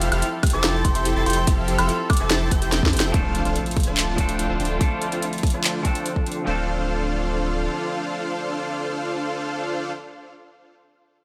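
A lush, lightly reverberant digital mix opens this bittersweet half-time future bass excerpt directly on a drop, led by a huge, detuned supersaw riff with a low-pass filter, delay and sidechain pumping, over a thick saturated sub bass, a hard-clipped electronic kick and an up-front trap kit of sharp snare, metallic hats, handclaps and woodblock. In the background, dark, reedy chamber strings hold sustained chords, while an airy chorused lead and a very quiet tine-like synth pluck play arpeggios and a crystalline FM bell with dub echo adds a brief melody. After a drum fill, a very quiet electronic impact lands at 3.2 seconds as a clean, hollow-body electric guitar enters with delay and the supersaw gets a filter sweep; the drums stop near 6.4 seconds and the bass soon after, leaving strings, guitar and supersaw to carry the close.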